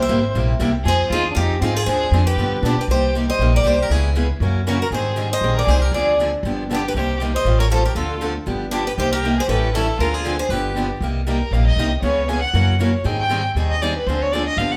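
Swinging and virtuosic, this short cut from a longer acoustic string swing piece races along at 236 BPM in C minor, its eighth notes lightly swung. A bright, boxy steel-string guitar carries the picked melody up front until 10.9 seconds, while a warm, bowed violin weaves a second line with vibrato and portamento, its smooth top reaching up to Ab5 before it takes a solo from 11.0 seconds. Underneath, a second steel-string guitar with fresh strings and an old ladder-braced guitar sitting in the background pick out the accompaniment, finger squeaks audible on all three guitars. The upright bass is woody, dark and thumpy, its pizzicato gut strings sitting up front. The harmony moves quickly through minor-key changes such as Cm7, Dm7b5 and G7, with side-steps to Dbm7 and F#7. The band plays live in one room, wrapped in a large studio reverb.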